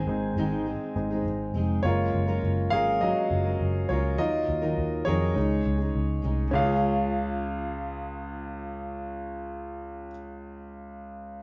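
A warm concert grand piano takes the solo through the first 6.5 seconds, sitting up front with an intimate, polished tone, deep bass, long sustain and audible action noise, moving through Ab, Gbmaj7, Ebmadd9 and Dbsus2 before resolving to Db. Beneath it, a full-bodied jumbo steel-string acoustic guitar plays a fingerpicked riff, and a dark, round, punchy muted electric bass adds foam-muted, amped weight up front. This anthemic pop piece in Db major moves at a straight 102 BPM in 4/4, with the band captured live in one room and bathed in a wet large-studio reverb.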